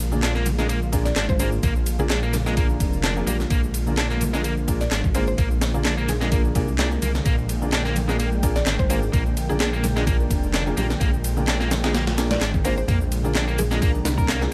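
Breakbeat with a raw, funky mood at 128 BPM, this dry fragment of a longer piece rests on a single Bb7 chord, driven by a gritty, compressed sampler-style break with a thumpy kick and high-tuned snare, layered with an overdriven house kit of handclaps, ride and shaker plus very quiet, ringing congas and bongos. A deep, rumbling detuned saw bass sits up front beneath boxy grand piano stabs with tape echo and a bright, biting overdriven guitar riff roughened by 12-bit sampler grit. In the background, a lush, warbling unison pad pumps with sidechain, and from 1.1 seconds a woody, mellow FM pluck melody adds chorus and an old-record sheen.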